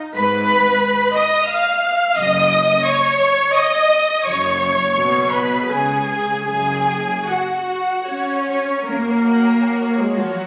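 Crackling like a very old 78 rpm record and bathed in recital-hall reverb, this melancholic, elegiac fragment of a slow romantic movement for string orchestra sways in a rubato 3/4 at 73-91 BPM in F# major, with an expressive, distant violin section singing the vibrato-rich melody up front over a focused second violin line in the background, a lush viola accompaniment, smooth, even cellos on the bass, and a close double bass section beneath, the harmony settling on F# at 8.9 s before the double basses drop out at 9.5 s.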